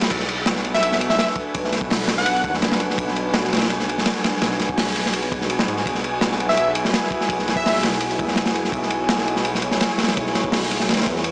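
A crunchy, saturated breakbeat kit and a warbling, tape-like pad open this raw, dark drum and bass excerpt, with the drums up front and gritty, their cymbals dulled and the tight kick and medium-tuned snare sitting forward in the mids. The pad hangs in the background with slow-attack sustained chords, its chorus, built-in reverb and vintage 12-bit sampler grit giving it a nostalgic, lo-fi haze. A thick, menacing detuned saw bass arrives at 0.1 s with beating low notes, and a breathy, wind-like tuned noise texture drifts in behind it, held on a single high pitch under its own reverb. A punchy, bright unison lead plays a catchy figure from 0.7 to 2.5 seconds and returns at 6.5 seconds, its filter-swept plucks colored by cassette tape wear and dub echo. The harmony moves from Bm7 to Eadd9, and the whole piece carries a dry, small-speaker hardware sound with a touch of small-room ambience.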